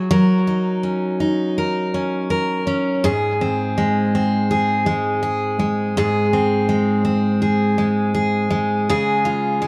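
A straight, unhurried 4/4 pulse at 82 BPM sets an easy-going pop groove in this brief cut from a longer piece. A single picked steel-string acoustic guitar carries it alone, its full-bodied jumbo tone sitting up front, with finger squeak audible. The harmony settles on Gb6, moves to Ab at 3.0 seconds, and arrives on Db at 8.9 seconds, spanning from Ab2 up to Bb4. Tape echo trails the guitar, and a moderate studio reverb gives the sound a sense of space. The mood is sunny and relaxed throughout.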